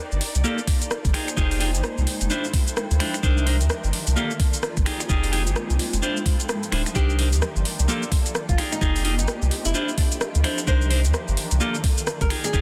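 UK garage in a two-step style, this bouncy, skippy excerpt rides a swung 4/4 groove over a looping cycle of minor ninth chords. A saturated sub bass sits deep, thick and up front, while a layered garage kit of finger snaps, metallic hi-hats, rim clicks and shaker is already running when an overdriven electronic kick adds a knocking punch from 0.7 seconds. Behind them, a muted symphonic violin section holds dark, veiled chords with vibrato, and a granular cloud pad drifts in a bright, blurred haze with its own reverb, both pumping against the sidechain. A clean electric guitar supplies dark, picked stabs through tape echo. At 7.0 seconds a fingerpicked flamenco guitar enters with an acoustic melody, also coloured by tape echo. The mix carries light reverb and a dense, heavily limited modern master.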